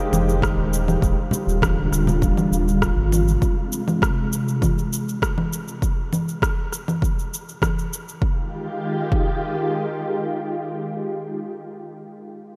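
A straight 4/4 groove at 100 BPM sets a wistful, smooth sunset chillout mood in F dorian, with a punchy electronic kick and up-front layered electronic congas, cabasa and rim click, plus very quiet acoustic congas heard close between 1.3 and 2.3 seconds. A silky vintage string machine holds mellow sustained chords through a phaser and ensemble chorus, with a filter sweep running until 5.8 seconds, while a round, deep analog bass sits up front and a clear, intimate grand piano with audible action noise plays a brief accompaniment in the background. The dreamy mix is soaked in a moderate cathedral reverb, with chords moving from Fm9 through Ebmaj9 and Ab6 before returning to Fm9 at 8.2 seconds in this cut from a longer piece.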